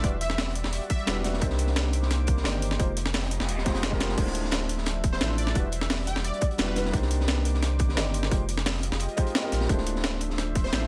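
Melancholic and lush, this excerpt of liquid drum and bass moves at 174 BPM over minor ninth chords, with a felt-muted upright piano offering soft, intimate accompaniment through digital delay, its action noise audible, while a thick, detuned sawtooth pad with chorus sits in the background and a round sine sub bass holds the low end up front. The drums stack a tight, overdriven electronic kick, a gritty sampler-style breakbeat kit with a high-tuned snare and crash, and a darker, saturated breakbeat kit with a rolled-off top tucked behind, all in a small room. A bright, punchy plucky lead with vibrato, ensemble chorus and dub echo appears in short phrases at 0.0, 5.1 and 10.6 seconds, and a faint noise sweep runs in the background from 3.2 to 4.2 seconds, around a drum fill at 4.0 seconds.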